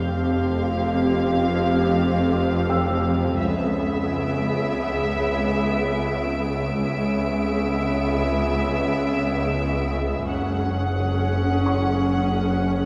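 Floating in free time, this cinematic suspense cue, cut from a longer piece, feels mysterious and uneasy across its 12.9 seconds. Muted violins carry a narrow melody between E5 and F#5 with veiled vibrato, while con sordino violas fill the middle with smooth, soft-edged accompaniment. Below them, muted cellos and double basses hold the bass in the background, dark and lightly vibrato, joined by a tense, string-like synth drone whose detuned sawtooth layers, noise and built-in reverb add a bright edge. A felt-muted upright piano adds a boxy, intimate texture high in the background, and a lush second violin section spans up to D7 before dropping out at 9.9 seconds. The harmony moves from Fsus2 to C#m7 and settles on F#sus2 at 10.3 seconds, all heard from further back in a concert hall with a long, wet reverb.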